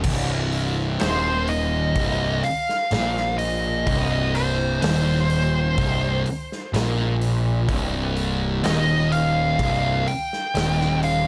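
This brooding stoner and doom metal excerpt opens with a pair of thick, picked fuzz guitars grinding out a low riff, one sitting further back in the mix, while an overdriven picked bass growls up front beneath them. A big acoustic rock kit plays along in a roomy space, its punchy kick, medium-tuned snare, hi-hat and bright crash cymbals giving the slow, straight 4/4 pulse a heavy, hypnotic weight. At 1.0 seconds a compressed fuzz lead guitar enters up front, singing a high melody coloured by wah, distortion and analog delay. The whole passage rests on a single C minor chord, a darkly droning foundation for the lead line to hover over. A light reverb surrounds the mix, and the drums drop out at 11.2 seconds, just before the other parts end at 11.3 seconds.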